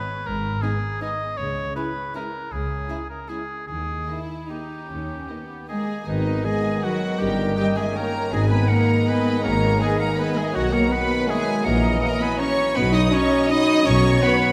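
A lilting 3/4 waltz pulse, pushed and pulled by rubato between 141 and 175 BPM, carries this dark, bittersweet orchestral ballroom piece in G# minor, cut from a longer work. A warm oboe opens the passage at 0.0 s with a light vibrato and smooth top, and the bowed string sections gather around it: a dark double bass section and a soft-attacked cello section anchor the low end, while a floating, distant violin section sings the high melody sul tasto above a close, background second violin line, a woody, lush viola section with vibrato, and clear, loose French horns holding sustained chords. At 6.1 s the second section brings a fuller wind and brass colour, as an airy, metallic flute with a straight tone and crisp attack (entering at 5.7 s), a very quiet dark clarinet, a mellow bassoon, a tight dark trombone section and a soft mellow tuba join the texture. The harmony moves from G# minor through C# minor and D#, then on through D#7 and B toward F#7 before settling on B. 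Everything sits in a wet concert hall with a long, lingering reverb that lends the ensemble a distant, ballroom glow.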